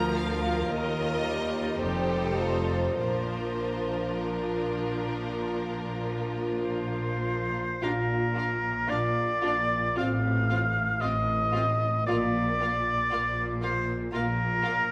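A slow, rubato pulse in four carries this lyrical, serene classical passage, cut from a longer piece, where a focused, vibrato-rich violin section sings the melody over a smooth second violin line, distant violas, an even cello section and a lush symphonic double bass section, before a clear, up-front solo oboe enters at 6.6 seconds and a dark, roomy French horn section adds sustained chords from 7.8 seconds, all bathed in a recital hall's reverb.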